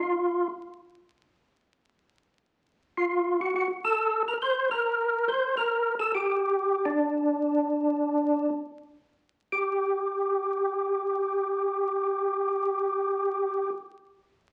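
In free time, a lone percussive tonewheel organ drifts through a smoky, late-night jazz passage cut from a longer piece, its fat, lightly overdriven tone sitting up front with third-harmonic percussion, audible key click, chorus vibrato and a slow rotary speaker. The phrasing falls into two parts, with a shift at 9.5 seconds, all within a modest middle register. Heavy large-studio reverb and the crackle of a very old 78 rpm record wrap the playing in a hazy, aged atmosphere.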